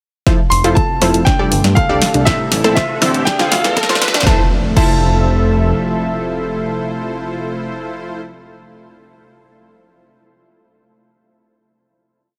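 This uplifting, hopeful progressive house piece in F major opens at 0.3 seconds with a four-on-the-floor electronic kick, a house kit of closed and half-open hats, a snare backbeat and crash, and a drum fill running through the build-up. With them come a round analog pluck playing a 16-step arpeggiated sequence in the background and airy, detuned supersaw stabs in dotted-rhythm chords. Filter sweeps move across both synths over the chords Fmaj7, Gsus2, Am and Dm7. A lush unison pad with vintage sampler grit holds the harmony, a fat, nasal analog bass drives a galloping sixteenth-note line, and a brilliant concert grand piano states hook phrases in its high register with tape echo. Much of this breathes with sidechain pumping at 120 BPM, and a background riser enters at 2.1 seconds. At 4.3 seconds the build gives way to a final Fmaj7, where the pad, stabs and piano ring on after the drums and pluck drop away.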